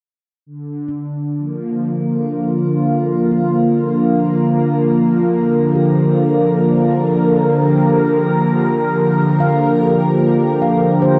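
A detuned sawtooth pad with chorus opens at 0.5 s on a sustained Bb chord, sitting smooth and up front in this weightless, luminous ambient excerpt at 74 BPM, while from 0.9 s a ringing, mellow handpan fades in behind it with soft fingertip arpeggios steeped in diffuse delay and shimmer reverb, the whole wrapped in a lush hall and a dark, warm production.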